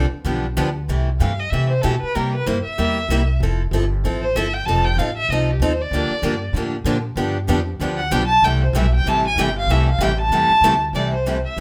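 Swinging and playful, this short excerpt of acoustic string swing in the jazz manouche style moves at a brisk 191 BPM in C major, with a woody, thumpy pizzicato upright bass on gut strings and a bright, boxy picked steel-string guitar carrying the accompaniment up front, while a second picked guitar with finger squeak sits in the background, dropping out after 0.7 seconds and returning at 5.9 seconds. From 1.2 seconds a bowed violin takes the melody as a solo, its vibrato and portamento giving an expressive, slightly distant voice over changes that run from C6 through Fmaj7 and Bb6 back to G7. A moderate studio reverb lends the whole a sense of room.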